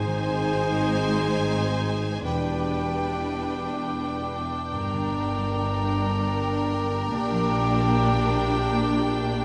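Cinematic and rubato in 6/8 at 50 BPM in G phrygian, this longing, bittersweet excerpt has a violin section carrying a focused, distant melody while a second violin section, a pure-toned flute and a roomy oboe weave second lines alongside a lush viola accompaniment and dark, tight French horn chords. A mellow, ringing harp plays arpeggios in the background, and a clear double bass section with soft-attack cellos forms the bass as the chords move from Ab through Em7 and Gm to Bb6. The ensemble sits on a moderate scoring stage with a reverb tail of 1.7 s.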